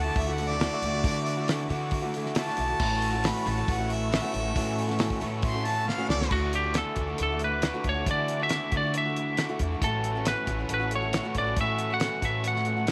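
A distant, roomy harmonica with light vibrato solos through the first 6.3 seconds of this open-road folk and heartland rock excerpt at 137 BPM in D major, and a dark, slightly broken-up lead guitar takes the melody up front at 6.3 seconds after a drum fill, all over a boxy ladder-braced acoustic guitar, a double-tracked overdriven semi-hollow riff, woody pizzicato upright bass, a damped 70s kit with a fat snare and dark cymbals, and veiled, muted strings holding sustained chords in the background, under light studio reverb.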